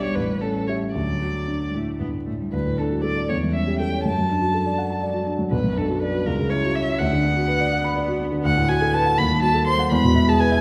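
This quick classical-period movement for piano trio has a lively, cheerful mood, moving in 6/8 at roughly 75-83 dotted-quarter beats per minute with a flexible, rubato feel in D major. A single violin sits up front carrying the melody, its rich tone colored by vibrato and expressive portamento. A lone cello plays a focused second line from the background, while a dark, mellow concert grand supplies the accompaniment with deep bass and audible action noise that lends it an intimate, vintage character. After a brief opening phrase, a new section begins at 2.5 seconds, moving through A7 and D harmonies to B minor, then through a D-sharp diminished seventh to an E chord near 9.9 seconds. The trio is heard from further back in a recital hall, with a generous wet reverb around the instruments, and the clip is cut from a longer piece.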